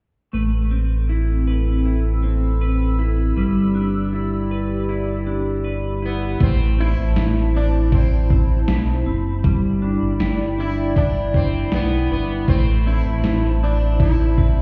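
Heard muffled as if through a wall, with a stone-room reverb, this blissful, floating dream pop excerpt moves at 79 BPM over Amadd9 and G6 chords, as a clean semi-hollow electric guitar arpeggiates through lush chorus and tape echo above a deep, up-front sine sub bass with octave, joined at 1.0 seconds by a hollow, airy, flute-like pad holding sustained chords. At 6.1 seconds a buzzing, shimmering sitar takes the melody with tape echo, and at 6.4 seconds an overdriven, gated 80s digital drum machine arrives with a thumpy kick, hi-hat and a gated-reverb snare.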